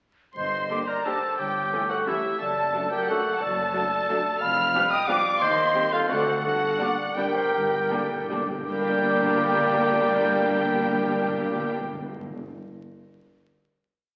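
At 0.4 s a bittersweet, dark orchestral ballroom waltz in G minor opens in 3/4: a rich, focused chamber violin section carries the vibrato-laden melody, doubled in sixths by a mellow, hollow silver flute and at the octave and in unison by a soft-attacked oboe, over bowed cello and double bass sections and single hard-mallet timpani strokes. Just after, a lush symphonic violin section, violas, very quiet tight trombones and horns, and distant, roomy trumpets fill in after-beat and sustained chords. The rubato tempo, between 150 and 192 BPM, slows from 5.9 s, with a timpani fill arriving at 6.4 s and a background clarinet answering phrase ends from 6.8 s, before a final chord at 8.7 s, all heard through scoring-stage reverb and the crackle of a very old 78 rpm record.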